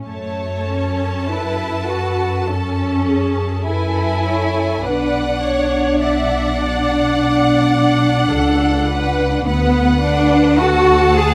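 The cello section sits up front with a rich, focused bowed tone, carrying the bass line from the very start, joined at 0.1 s by a close, even double bass section. This is a slow romantic movement for string orchestra, serene and lyrical, played with rubato phrasing in 4/4 and cut from a longer piece. At 0.1 s a violin section takes up the melody with a lush vibrato sound, while a second violin line moves smoothly in the background. Violas fill the middle register with a soft-edged accompaniment. The harmony shifts at 4.9 s and again at 9.5 s, and a moderate large-studio reverb gives the ensemble a spacious bloom.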